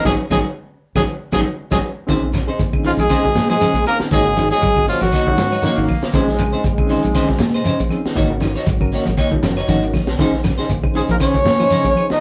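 A brilliant trumpet leads this defiant, driving afrobeat cut at 118 BPM in Bb minor, playing up front with light vibrato in a pop style and returning at 11.0 seconds after a break. A clear trombone with scooped notes joins beneath it at 2.9 seconds, and a punchy, vintage trombone section adds a brief second line from 5.6 seconds. Underneath, a crunchy breakbeat kit with a high-tuned snare, tight kick and gritty, saturated, rolled-off tone pushes a swung sixteenth-note feel, opening with a band accent and a drum fill. Fingered electric bass, foam-muted and warm, anchors the Bbm11 and Ab9sus4 changes. A clean semi-hollow guitar plays stabs, a twangy, slightly broken-up guitar through a small old amp picks tremolo arpeggios, and a very quiet reedy electric piano with tremolo comps and takes a short fill. Thick-skinned, damped congas, a grainy shekere and woody claves sit in the background, all caught in a rough rehearsal-room sound with moderate reverb.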